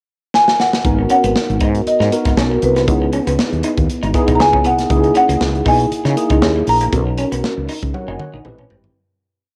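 Polished 1980s jazz-funk pop with an urban, nocturnal mood at 118 BPM in G# minor, where a drum fill at 0.3 s, alongside a mellow soft-mallet marimba singing motif-based song phrases with a tape-worn tone, opens onto a crisp fusion kit's airy sixteenth-note studio groove with a punchy kick. They are joined by a growly, woody fretless bass playing an agile syncopated line full of muted ghost notes and chromatic approach notes, a tine electric piano with ensemble chorus pushing rootless chords and short fills, and a quiet semi-hollow guitar with lush chorus picking a muted single-note riff, the whole set in moderate spring reverb on a home cassette recording that fades out from 6.9 s.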